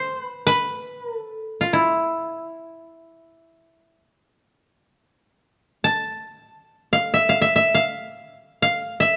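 Austere and calm, this short passage of Japanese traditional chamber music is cut from a longer piece and rests entirely on a solo koto. The instrument is plucked with fingerpicks and sits up front, with a dry, woody tone that the close, detailed microphones capture in fine grain. Its line stays in the middle and upper register, between E4 and A5, and it flows in free time, in the miyako bushi scale. The same passage is heard twice, the second statement starting at 4.6 seconds and running to the close at 9.2 seconds. A light reverb gives the room a faint sense of space around the otherwise intimate, restrained sound.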